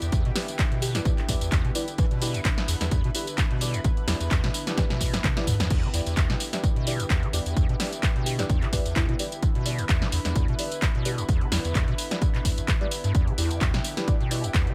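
A squelchy, resonant square-wave acid bass drives this raw acid house excerpt at 129 BPM in E minor, its saturated riff running through overdrive, ensemble chorus and sidechain pumping across the full 14.7 seconds, with a filter sweep in its tone. Alongside it, a punchy electronic kick sits up front, while an analog drum machine supplies tape-warm snare, handclaps, hi-hat, tambourine, toms and crash cymbal with a 16th-note swing, playing a drum fill from 4.8 to 5.7 seconds. A lush, airy unison pad holds sustained chords on an Em7 harmony, pumping against the kick. Further back, a deep, mellow chord stab with a filter pluck adds dark, cassette-tinged hits through phaser and dub echo. A sparkling, bell-like FM electric piano appears only briefly, around 0.8 and again at 8.3 seconds, its short phrases trailing dub echo in the background of a dry, driving mix.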